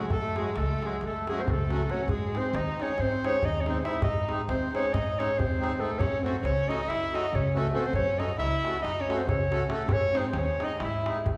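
A wet recital-hall reverb, with a decay of 1.5 seconds, places the listener further back in the room on this short fragment of Balkan wedding-band folk, cut from a longer piece. It moves at 276 BPM counted in eighths in a straight 9/8, in F# dorian sharp4, and the mood is restless and fiery. Up front, a clear, classical-style clarinet carries the solo melody, while a single bowed violin plays an intimate second line beneath it, sul tasto with light vibrato, a soft attack and an airy bow. A reedy accordion with slow beating supplies the accompaniment, and a dark, woody pizzicato upright bass on gut strings gives a thumpy low end. In the background, a deep, warm clay-shell darbuka with a natural skin keeps the percussion going, and the harmony moves between F#m and G#, with the clarinet holding the lead for the full 11 seconds or so.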